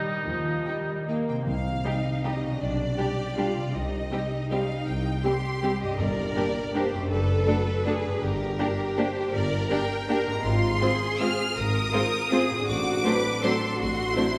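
A lush orchestral sound fills a reverberant concert hall in this elegant, festive ballroom waltz in C minor, cut from a longer piece and moving in 3/4 at 144-174 BPM with a flexible, rubato feel. A bright, up-front oboe opens with a brief soft-attacked note that ends at 1.3 seconds, while a fingerpicked concert harp rings out arpeggios and a smooth, even viola section supplies the accompaniment. Cellos and double basses anchor the bass with bowed, vibrato-rich tone. A focused violin section carries the melody, and a second violin line sits in the background. From about 1.9 seconds a mellow French horn section holds sustained chords behind the strings. Very quiet timpani struck with soft mallets add round accents at 1.5 and 6.0 seconds as the harmony moves through Cm, G/B, Gm and D/F# before closing on D7/A.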